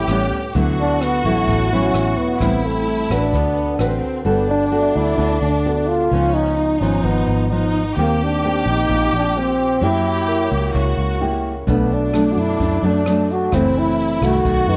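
Bossa nova at 130 BPM in D major, romantic and sophisticated and cut from a longer piece, where a breathy, mellow trombone with vibrato carries the melody over a lush bowed violin section with portamento, a thumb-plucked nylon-string guitar and a round, foam-muted fingered electric bass, while brushed drums with a boomy kick and a grainy tube shaker sit in the background of the opening, drop out, and return at 11.7 seconds, and a clean tine electric piano adds brief touches from 4.5 seconds, the whole blend set in a moderate echo-chamber reverb.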